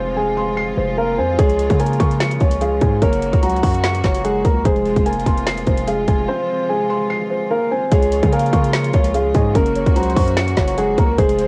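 A dark baby grand piano carries a melancholic, menacing hip hop trap melody over a boxy, felt-muted upright piano with audible action noise, a bowed symphonic string section with light vibrato, and a punchy sine-based 808 bass, before an up-front trap drum kit of hard-clipped kick, woody snare and metallic hats enters at 1.4 seconds in a half-time feel, falls silent from 6.3 seconds, and returns at 7.9 seconds, shortly before a velvety sawtooth synth lead with chorus and analog delay joins in the background at 8.1 seconds, in a home cassette recording with studio reverb where the upright, strings, drums and synth carry cassette tape coloring.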